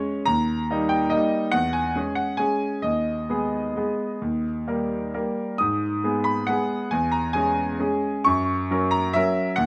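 Close, detailed microphones and light reverb place a clear, smooth grand piano up front, its vintage tone carrying a long sustain. This is a brief excerpt of a nostalgic, wistful classical waltz in G# minor, played solo in 3/4 with rubato, the tempo drifting between 123 and 146 BPM across a range from D#2 to D#6. The harmony moves from D# through C#m/E and G#m/D#, returns to D#, and passes through G#m and C#m/E before arriving on F# at 8.3 seconds.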